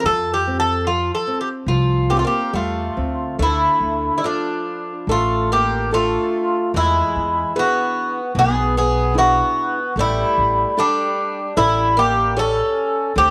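Set in light reverb with a touch of studio ambience, this excerpt from a tender, nostalgic fado-style ballad in 4/4 moves with uneven, rubato beats, its harmony turning from Fadd9 to D minor at 3.4 seconds and on through E7 and A7sus4 to A7. A bright, metallic Greek bouzouki carries the melody up front, its picked double strings ringing over a fingerpicked, classical nylon-string guitar and the woody pizzicato of an upright bass. From 2.1 seconds a picked twelve-string acoustic guitar adds a boxy, shimmering, octave-doubled second line with a touch of swing and audible finger squeak.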